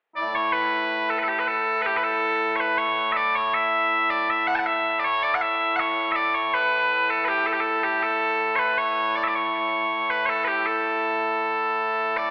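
Heard through a narrow, telephone-like filter, this recording sits in the long, wet reverb of a concert hall, and the tail hangs for a couple of seconds. It is Scottish traditional music in a straight 2/4 metre, cut from a longer piece, with a stirring, proud mood. A single set of bagpipes carries the melody alone, entering at 0.2 s and sounding continuously, loud and up front, until the clip ends at 12.3 s. Their piercing tone is bright and cuts through the hall's wash, and their range reaches from A2 up to A5. The instrument is tuned slightly above standard pitch, to A4 = 441 Hz.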